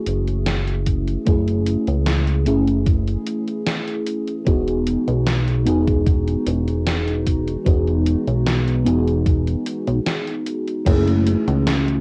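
Hazy and woozy, this vaporwave fragment drifts at 75 BPM in a straight 4/4, cut from a longer piece and sitting in F# dorian with a slightly sharp tuning. A mellow FM electric piano carries the accompaniment with a soft, round tone, its dark voice roughened by 12-bit sampler grit, analog chorus and tape echo, while a warbling, nostalgic pad holds sustained chords in the background with a slow attack and long release. Up front, a glossy, nasal chorused synth bass built from pulse and sawtooth waves gives each note a filter pluck and a moving notch. A gated 80s drum machine supplies crash, hi-hat and a gated-reverb snare, and a thumpy electronic kick enters at 0.9 seconds and drops out at 11.0 seconds. The harmony rests on F#m9, shifts to Emaj9 at 4.5 seconds and returns to F#m9 near the end, all captured with light reverb in a cassette-bound home recording.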